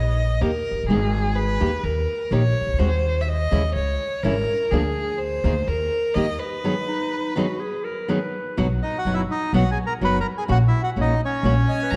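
Elegant and playful, this tango excerpt moves in a loose, rubato 4/4 through a dark, warm-toned production set in a moderate concert hall reverb. An up-front bowed violin carries a solo from the start, its soft attack, vibrato and portamento lending an expressive, singing quality, while a woody, thumpy pizzicato upright bass on gut strings anchors the harmony throughout. A bright, full-bodied nylon-string guitar, fingerpicked in classical style, joins at 0.4 seconds with accompaniment. During a break, a jazz-style clarinet enters at 6.9 seconds with a punchy, forceful tone, smooth on top and touched with light vibrato. At 8.8 seconds a reedy bandoneon takes over the melody up front as the harmony shifts to a brighter major centre, with violin and clarinet returning briefly in the closing moments.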